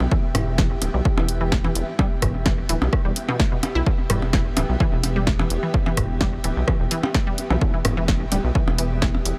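Lightly reverberant and clinical, this sparse minimal techno excerpt at 128 BPM in E minor rides on an overdriven, up-front electronic kick and a punchy analog drum machine's hi-hat and snare, with a rubbery, hollow square bass pumping under sidechain, a squelchy resonant blip pluck carrying the riff through chorus and tape echo, a distorted background click kit of rim clicks, toms and blips with analog delay, a cloudy, evolving granular pad, and one very quiet zap at 7.5 seconds.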